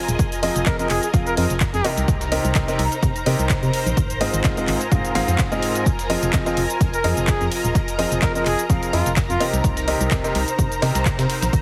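Piano house at 127 BPM in F minor with a soulful, bittersweet mood and a light swing on the sixteenths, built on a brilliant, up-front grand piano riff over an organ-like FM bass, a punchy electronic kick, a house kit of handclaps, hi-hat and shaker, and a very quiet, gritty sampler-style kit adding hi-hat and a fat snare. A silky analog string pad and a dark, woody studio string section sit in the background with sustained chords and texture, while piano, pad, strings and bass all pump against the kick, and the harmony moves through Fm7, Cm7 and Ab6. A soft-attack solo trumpet with light vibrato and lo-fi sampler grit plays brief melodic phrases at 0.7 and 6.9 seconds, echoed by digital delay, all within a heavily compressed, radio-like sound and light reverb.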